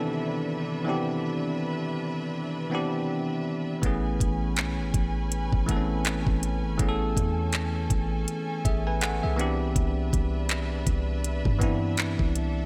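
Contemporary R&B at 81 BPM with a swung sixteenth-note feel, dreamy and romantic, moving from Cmaj9 to Amaj9 and back in this short excerpt cut from a longer piece. A bell-like, bright tine electric piano sits up front over distant, bowed studio strings holding smooth sustained chords with vibrato. At 3.8 seconds a deep, boomy 808-style bass with a fast attack and mellow decay enters together with an electronic drum kit of knocking kick, metallic hi-hats and handclaps, all in a dry, close sound.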